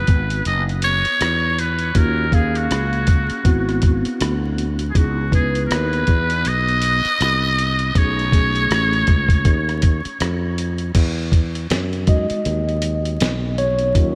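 A buzzy, breathy trumpet with a metal mute sings a vibrato-laden, scooped melody through a diffuse ambient delay until 10.2 s, floating over mellow, clean tine electric piano, a growly fretless bass and a gritty, compressed sampler-style kit with thumpy kick, fat snare, hi-hat, rim click and crash in this relaxed, dreamy 80 BPM jazz-hop excerpt in E major, swung and soaked in cathedral reverb and vinyl crackle, before the electric piano takes a solo from 11.0 s.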